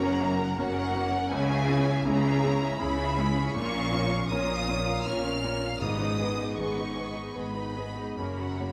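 Longing and sorrowful, this brief cinematic film-score excerpt in G# minor unfolds at a rubato 79 BPM in 3/4, with lush, vibrato-rich violins singing the high melody over a softer second violin line, a muted upright piano with thin felt and audible action noise, smooth background violas, distant cellos and double basses, a mellow ringing harp, and a very quiet, dry timpani touch from 5.8 to 6.9 seconds, all set in a recital-hall reverb.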